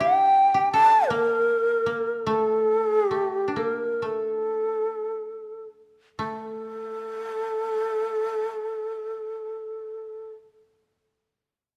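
Japanese traditional chamber music, calm and austere, in A sen scale and 4/4 with a rubato feel between 54 and 83 BPM, slowing over the first 6.2 seconds of this fragment cut from a longer piece. Up front, an end-blown bamboo shakuhachi carries the melody with a breathy tone, vibrato, tongued chiff and rolled-off highs. Beneath it, a koto played with fingerpicks adds a dry, woody second line, and a moderate recital-hall reverb surrounds the pair before the music moves into a new section at 6.2 seconds.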